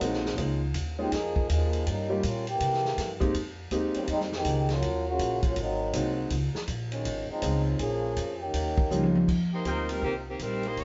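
This joyful, energetic big band swing passage opens on a veiled, cup-muted trombone section taking a solo over clear baby grand piano, woody pizzicato upright bass and a punchy, natural drum kit, and after a drum fill at 8.9 seconds a bright, loose saxophone section takes up the melody at 9.5 seconds, with quiet light-vibrato trumpet stabs joining at 9.7 seconds, all captured live in one room with moderate reverb and a rolled-off top end.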